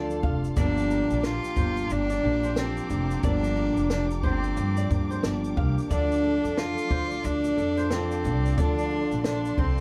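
Acoustic pop with a wistful, tender mood, moving at an easy swung pace in a minor key, cut from a longer piece. A picked steel-string acoustic guitar carries the accompaniment while a woody pizzicato upright bass sits up front. A compact cocktail drum kit enters at 0.1 seconds with a punchy kick, a high-tuned snare and shaker, its sound dry and natural. At 0.6 seconds a close, intimate cello takes the melody, bowed sul tasto with light vibrato, a soft attack and an airy tone. Behind it, a flamenco guitar plays fingerpicked arpeggios with audible finger squeak, and a lush studio string section holds smooth, expressive sustained chords. The harmony moves from Dm to Gm7 and back to Dm, and a small room's reverb places the whole ensemble a little further back.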